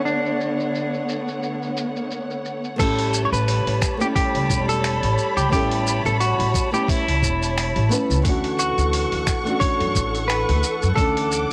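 Relaxed and unhurried, this swung sunset chillout fragment pairs a clean, hollow-bodied electric guitar melody, softened by cassette tape and tape echo, with fingerpicked nylon-string guitar and a lush bowed string section full of vibrato and portamento over Bm9, A9 and Dmaj7 chords, while a gritty, dusty sampler-style kit of finger snaps, shaker, hi-hat and crash sits low-pass filtered in the background until a woody pizzicato upright bass and a thumpy electronic kick both arrive at 2.8 s, all in a small room with the character of a home cassette recording.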